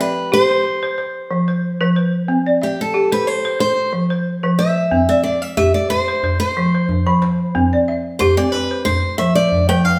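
A picked steel-string acoustic guitar and a balafon open together in this joyful, flowing slice of West African string and xylophone music, cut from a longer piece. The guitar carries the melody up front with a concert-quality, picked tone, while the balafon's hard rubber mallets spin arpeggios that sound woody, round and dry, with a boxy small-room character. A gentle swing on the sixteenths gives the lilting groove its ease as the harmony moves back and forth between C and F5. At 4.9 seconds a djembe joins beneath them, struck with soft hands for a deep, compressed and saturated warmth. The band plays live in one room, wrapped in a generous studio reverb that lends the whole short passage an open, airy glow.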